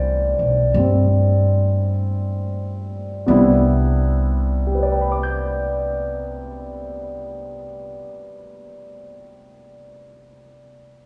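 Tender and late-night in mood, this short fragment of a jazz ballad unfolds with a gentle swing feel in 4/4. A grand piano with a warm, natural tone carries the accompaniment, opening on a Cmaj7 chord and sitting up front in the mix. Beside it, a pizzicato upright bass with steel strings gives a woody, thumpy low end, also placed up close. The music slows over the first 3.3 seconds before a new passage begins. The bass drops out at 8.0 seconds, leaving the piano alone until 11.1 seconds, all of it surrounded by the lingering reverb of a recital hall.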